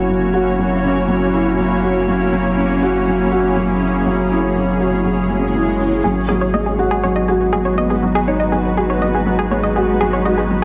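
Electronica at 121 BPM with a hypnotic, melancholic mood, this excerpt sets a soft, boxy felt-muted upright piano riff with tape echo up front over a cloudy, granular pad of sustained chords and a deep, round sub bass, moving from F#7 to G#m7 as a background electronic swell arrives at 5.3 seconds and a bright analog pluck with chorus and tape echo joins with arpeggios at 6.0 seconds, all within a wet echo chamber reverb.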